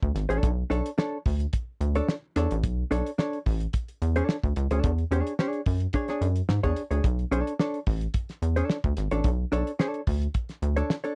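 A rubbery, bouncy square-wave bass anchors this short funk excerpt, its fast-attack filter pluck and ring-modulated, resonant tone sitting up front from the very start and ranging from G#1 to G#2. Alongside it, a cloth-damped acoustic drum kit thuds away on hi-hat, tight kick and fat snare, its rolled-off top giving a muffled, small-room character. A clean, dark hollow-body electric guitar joins at 0.3 seconds, picked and compressed, supplying accompaniment between D4 and C#5. The groove moves at 109 BPM in a straight 4/4 in B dorian, cycling from Bm9 to E13 at 4.8 seconds and back to Bm9, which gives the piece a driving yet hypnotic feel. The sound is dry and close, with little reverb, in the manner of a 1970s studio recording.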